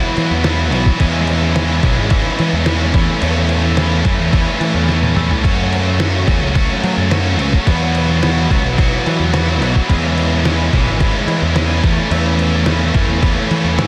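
Upbeat and jangly, this indie rock piece at 108 BPM in A major pairs a bright overdriven electric guitar riff, colored by analog chorus and tape echo, with a scooped high-gain guitar playing its own riff in the same register, while a fuzzy, up-front picked bass and a muffled, pitched-down sampler-style trip hop drum kit with a thumpy kick enter at 0.2 seconds. The chords cycle through Esus2, C#m, A/E and F#m, and a drum fill at 4.9 seconds leads into the F#m. The sound is dry, dense and heavily limited, cut from a longer piece.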